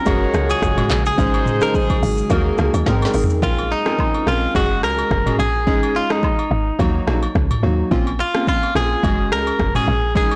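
A bright, twangy clean electric guitar carries the melody over round, detuned analog keys with chorus and a deep, dark pad in this mellow, sultry afrobeats excerpt at 107 BPM, swung on the sixteenths. Punchy horns add a second line, while a woody log drum bass, a crisp, tape-warm afro-pop kit with a deep kick and soft-clipped snare, and quiet agogo bells and woodblock come in almost at once. The horns stop at 3.1 seconds and the pad at 3.4 after a drum fill, the hi-hats fall silent from there, and the whole recording sounds overdriven and blown-out under light reverb.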